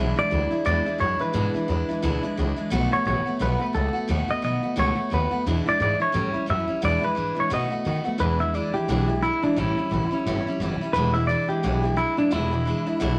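A twangy, compressed clean electric guitar leads this upbeat, retro rockabilly excerpt, its picked melody entering at 0.2 seconds and sitting up front with a bright, clean edge. Beneath it, a picked steel-string acoustic guitar with fresh strings gives full-bodied dreadnought accompaniment, also up front, its finger squeak audible. A pizzicato upright bass with gut strings supplies a woody, thumpy, dark low end throughout, and the whole moves with a swung eighth-note feel over dominant-seventh changes centered on E7, B7 and A7. At 8.2 seconds the electric guitar takes a solo that carries through to the close of the excerpt. Moderate studio reverb and a layer of vinyl crackle lend the recording its vintage character.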